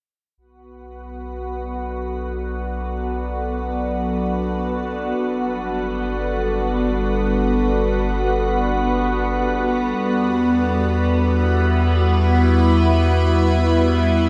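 Drenched in a cathedral-sized reverb, this reflective, serene ambient fragment is cut from a longer piece. A deep, round sine sub bass fades in at 0.4 seconds, followed by a calm organ-like drone of detuned unison sine voices with ensemble chorus at 0.8 seconds and an evolving, morphing triangle wavetable pad with chorus and phaser at 1.8 seconds, all three sustained and up front. The harmony drifts slowly from Bm7 to Gadd9 to Em.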